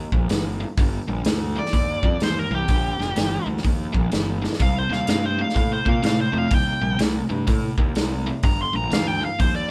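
A light reverb wraps this smoky, gritty blues rock power trio clip with a southern rock edge, cut from a longer piece and played live in one room at 125 BPM in G minor with a swung eighth-note feel. A bright, double-tracked cranked stack guitar drives an overdriven riff over a round, dark fuzz bass sitting up front, while a vintage kit with a tight kick, medium-tuned snare and rolled-off top keeps time and throws in a fill at 4.4 seconds. From 1.6 seconds a biting lead guitar cuts through with a bright, overdriven melody as the chords move from Gm to Cm and back to Gm.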